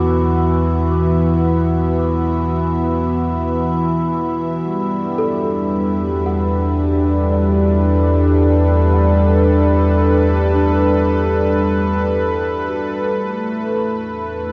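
Ambient music at a slow 56 BPM in 4/4, serene and melancholic, this short excerpt from a longer piece glides over an E bass from D/E to Gadd9/E and finally Asus2/E at 13.2 seconds. A smooth, mellow analog pad sits up front with sustained chords, treated with chorus and a shimmer reverb, while a very quiet celesta adds delicate, bell-like arpeggios. A round, deep analog bass gradually fades in beneath a reedy, breathing pedal harmonium drone that slowly fades away, all set in a dark concert-hall ambience before the whole passage fades out from 10.4 seconds.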